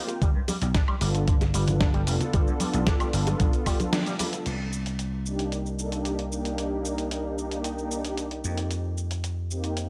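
A growly, punchy slap bass sits up front in this sleek, sensual nu-disco clip, its sidechain pumping giving the straight groove a breathing motion. A thumpy, compressed electronic kick anchors the opening alongside a gritty, dusty sampler-style kit of snare, hi-hat, shaker, woodblock and crash, re-recorded in a large room. A smooth sawtooth pad, detuned and soft in its attack, holds sustained chords with chorus and tape echo. Background color comes from ringing, close-miked bongos and congas and a bright, twangy envelope-filtered electric guitar riff. The kick drops out at 3.8 seconds, the band hits an accent at 3.9 in a short break, and the guitar and hand drums fall away there too, leaving the pad, bass and kit to carry a new section from 4.5 seconds. The sound is dry and gritty with transformer saturation, lightly touched by digital ambience, in a brief cut from a longer piece.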